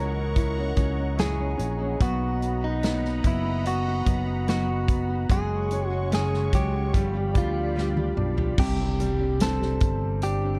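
This hopeful, emotional pop ballad moves at 73 BPM in B major, with a bright, clean, direct-recorded electric guitar carrying the melody over a clear concert grand piano, a full-bodied, fingerpicked nylon-string guitar playing quiet arpeggios, and an airy, detuned sawtooth pad holding evolving chords until 8.6 seconds. A growly, punchy fretless bass and an up-front acoustic drum kit with bright cymbals anchor the slow pulse, and a drum fill leads into a new passage where an electronic impact sits in the background from 8.7 seconds and a jingly tambourine appears briefly at 9.4 seconds. The production is dark and warm, set in a small-room ambience.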